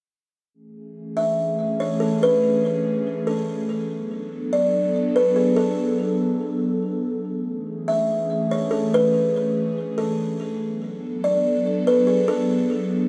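An airy, detuned pad with chorus opens this blissful, floating half-time hip hop excerpt at 0.9 s, holding soft sustained chords that alternate between Amaj7 and Bm7, before a buzzing, woody kalimba enters at 1.2 s with a ringing melody through digital delay, both set up front in a wet studio reverb.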